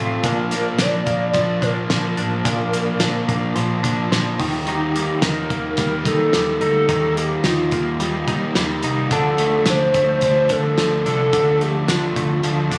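A straight 4/4 pulse at 108 BPM from a cloth-damped, thuddy drum kit with a fat snare and tight kick, sitting up front, drives this youthful, bright jangly indie pop fragment, as a round, foam-muted fingered bass and a crunchy overdriven guitar with tube saturation carry the Bb, Eb and Dm chords, a clean semi-hollow electric guitar plays arpeggios through tremolo and slapback echo, and a warbly, nostalgic, detuned lead with chorus and vibrato sings the melody from 0.2 seconds in a dry mix.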